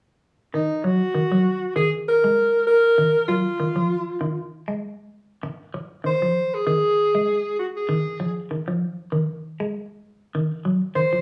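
From 0.5 s, a warm, pop-style alto saxophone with vibrato carries the solo melody up front, distant and roomy, while a clean, fingered hollow-body electric guitar plays arpeggios through a phaser alongside it, moving from Ebmadd9 to Fm7 and back in a driving, defiant afrobeat groove with swung sixteenths, the band playing live in one room and bathed in a large studio reverb in this fragment of a longer piece.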